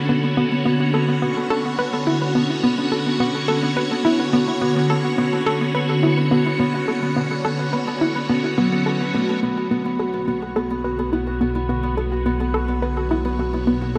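Ambient, sequencer-driven space music with a cosmic, mysterious mood, heard as a fragment cut from a longer piece in a steady, straight 4/4. A hollow, bouncy square-wave pluck carries a riff from the start, its detuned, wave-folded tone sweetened by chorus, delay and a mellow cassette-tape color. Beside it, an up-front Celtic harp rings out fingerpicked arpeggios through delay, while a swirling, vintage string machine holds bright sustained chords under ensemble chorus and phaser. At 9.4 seconds a fat, evolving analog bass enters on a low B, and the string machine fades in from that point. A huge, wet ambient reverb with a long tail wraps the whole arrangement in a deep, spacious haze over a single minor chord.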